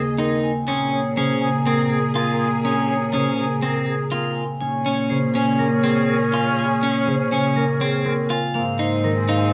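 Bright, metallic vibraphone struck with hard mallets carries the melody in this urgent, hypnotic slice of minimalist classical pattern music, joined by a clear oboe singing a second line with vibrato, a fingerpicked concert harp, and an intimate, sul tasto cello bass. From 0.2 seconds a slightly broken-up electric guitar, picked, compressed and up front, adds arpeggios, while a lush symphonic string section holds bowed, sustained chords. Close, detailed microphones and light reverb frame the straight 4/4 pulse as the harmony settles on Bbm7 before shifting to Ab69 at 8.5 seconds.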